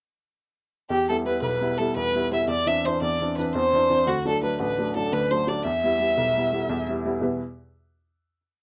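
The recording sits in a moderate studio room with a short reverb tail and a dark, rolled-off top. This is a complete Celtic folk slip jig in 9/8, dark and lively with a wild edge, played straight. A single bowed fiddle and an upright piano both start at 0.9 seconds and sit up front. The fiddle carries a focused, smooth-topped melody built from short motifs in period phrases, with light vibrato, and falls silent at 6.9 seconds. The worn, woody piano, slightly detuned and open-sounding with short sustain, keeps the pulse with bass notes and chord figures through Em, Cadd9/E and D before returning to Em. A final chord closes the piece from 7.2 seconds.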